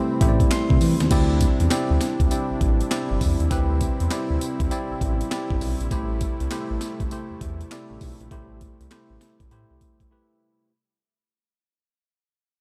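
Bouncy and punchy, this new jack swing R&B excerpt rides a swung 4/4 groove built on a gritty, compressed breakbeat sampler-style kit with a thumpy kick, high-tuned snare, handclaps, tambourine, hi-hat and crash, sitting up front beside a smooth, saturated sawtooth synth bass. A worn, slightly out-of-tune tine electric piano heard through a combo amp opens with a fill, while a brassy, nasal analog pad with chorus and vibrato sustains chords underneath, moving from Am7 to D9sus4 at 1.1 seconds and back at 5.9 seconds. The whole piece fades out from 1.1 seconds in a digital ambience, with the drums and bass dropping away for a break at 10.1 seconds.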